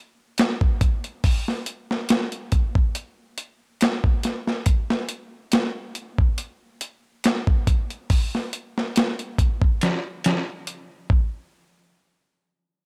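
A digital ambience surrounds this short cut from a longer trip hop piece, set at a hypnotic, cinematic 70 BPM in 4/4 with a slight swing on the sixteenths. A dusty, soul-flavoured sampler-style drum kit plays from 0.4 to 11.3 seconds, sitting up front with a gritty, compressed, overdriven character and a touch of small-room air. Its thumpy kick, medium-tuned snare and hi-hat keep their natural pitch, and the texture shifts briefly near the end at 11.5 seconds.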